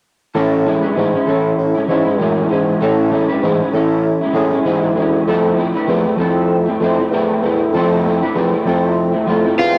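Two slightly broken-up electric guitars through a small old amp open this dreamy, laid-back indie and bedroom-pop excerpt with a gently swung feel: a dark, up-front accompaniment carrying analog chorus and vibrato, and a bright, twangy second line tucked in the background with tape echo, while a soft-attack bassoon plays the bass with classical vibrato and transformer saturation over a move from Amaj7 to Fmaj7, until an overdriven slide guitar played with fingerpicks arrives at 9.6 s, the whole home cassette recording sitting in light reverb.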